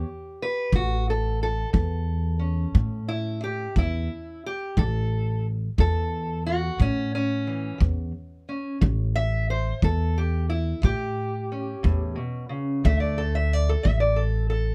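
Rollicking and swaggering, this short acoustic country blues excerpt moves at 60 BPM in a straight 12/8 in A mixolydian. A dark, boxy parlour steel-string guitar, fingerpicked and up front, carries the melody as a solo across the whole passage, over an A7 that shifts to D5 at 12.8 s. A woody, thumpy pizzicato upright bass sits close beside it, while a smooth, punchy kick drum played with brushes enters at 0.7 s and stays in the background, all captured with close, detailed microphones and little reverb.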